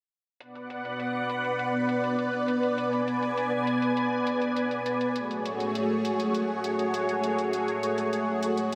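Synthwave in a nostalgic, moody vein, this short cut from a longer piece moves at 101 BPM in a straight 4/4, with the tuning sitting at A4 = 441 Hz. An up-front analog string pad carries sustained chords from 0.4 to 8.8 seconds, spanning A3 to G#5. It sounds silky and string-like with a detuned sawtooth edge, a triangle layer and a sub octave beneath, and its slow attack is joined by ensemble chorus, vibrato and a moving notch. The harmony rests on Bm before shifting to F#madd9/A at 5.2 seconds. Behind it, an electronic hi-hat plays across the same span, a sampler-style sound that is overdriven and re-recorded in a large room, with low-pass filtering on both the hats and the room, sitting in the background. A lush hall reverb with a 2.0-second decay soaks the mix, giving the whole passage a dreamy glow.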